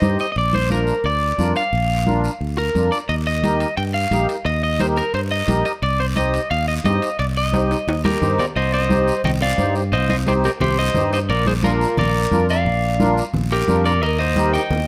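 A twangy, slightly broken-up electric guitar leads this passionate, danceable cumbia at 176 BPM in C minor, carrying the picked, compressed melody up front with spring and plate reverb. Beneath it, a sweet, reedy accordion with light tremolo tuning fills in smooth, dark accompaniment, while a growly fingered electric bass sits prominently in the low end. Ringing, medium-tuned congas played with soft hands keep the groove going from the background, joined by a raspy guiro. Metal-shell timbales and cowbell, close and dry, join at 3.1 seconds, drop out at 8.5 seconds and return at 14.0 seconds. The harmony moves through Bb, Eb and Cm, and the close, detailed recording with light reverb presents this short cut from a longer piece with crisp clarity.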